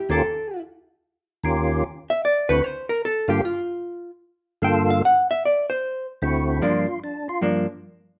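Set in a moderate studio reverb, this smoky, late-night swing jazz excerpt at 151 BPM features a dark, clean hollow-body electric guitar taking the opening solo until 6.6 seconds over chords of Eb7, D7 and Gm7, before a fat, lightly overdriven tonewheel organ, with its key click, third-harmonic percussion, chorus vibrato and slow rotary speaker, steps forward to solo through to the end.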